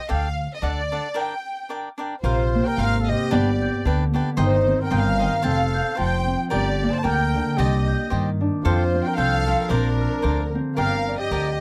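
Swinging lightly in 2/4 at 112 BPM, this romantic, festive mariachi excerpt in Bb major opens with a smooth, bowed violin section carrying the melody up front, a crisp, bright picked cavaquinho and a woody pizzicato upright bass anchoring the low end. After a brief break at 1.2 seconds, a soft-attack trumpet with light vibrato adds a classical-style second line from 2.2 seconds, joined by a ringing, fingerpicked Celtic harp playing arpeggios. The dry, close studio sound has a 1970s character, keeping the ensemble intimate.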